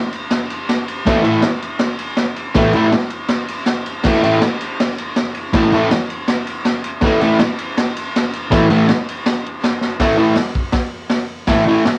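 Gritty, cassette-saturated home recording in a snug, reverberant small room, this swaggering garage rock excerpt pairs a crunchy breakbeat drum kit, with punchy kick, dark cymbals and a rolled-off top, against an up-front, double-tracked fuzz guitar riff that enters at 1.1 seconds, with a drum fill at 9.8 seconds leading into a brief closing section.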